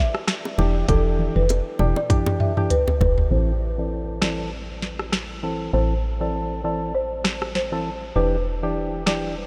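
A mellow folk marimba with soft mallets opens this hypnotic, tough dancehall excerpt, its rustic hardwood tone dulled by a low-pass filter and trailed by tape echo. An electronic island pop drum kit sits up front almost at once, with a tight kick, sharp snare, smooth hats, rim clicks and toms, and a drum fill runs until 3.3 seconds. High-tuned acoustic bongos add very quiet, close hand hits in the opening seconds, and a hollow, percussive organ stab with chorus and a low-pass filter joins alongside a round, dark FM bass with a fast attack and decaying tone. The harmony moves from Em7 to Am at 3.3 seconds, where a filter sweep begins, and returns to Em7 later on. Huge ambient reverb soaks the mix in a dreamy haze, lending the swung groove a floating, spacious quality.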